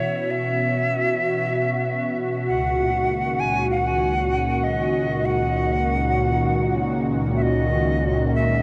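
A silver concert flute and an analog pad sound together from the opening moment of this deep, meditative ambient fragment, which floats in free time and is tuned to A4 = 441 Hz. The pad holds sustained chords from C#2 to F#4, its detuned sawtooth tone made smooth and mellow by a soft attack, long release and chorus. Above it the flute sings a melody between C#5 and G#5, airy and crisp, with vibrato, an unsteady quality and a dub echo trailing its notes. Both parts sit up front, the pad a little louder than the flute, while the harmony moves from C#m7 to D#m7/C# at 2.5 seconds. A huge ambient reverb with a 4.3-second decay and a dark, warm production wrap the 8.6 seconds, cut from a longer piece, in a spacious haze.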